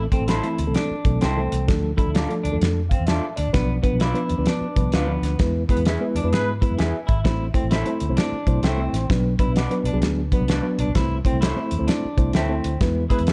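A reedy electric piano with fast tremolo and a round, foam-muted fingered bass open this urgent, passionate snippet of uptempo 1960s-style soul, joined at once by a cloth-damped, thuddy drum kit with a fat snare and tight kick sitting up front. A clean picked guitar riff and bright, twangy stabs from a slightly broken-up guitar with spring reverb fill out the swung groove over a minor progression. A mellow horn section with light vibrato slips in briefly at 5.7 seconds as the band accents the E chord, all within a dark, vintage-toned production.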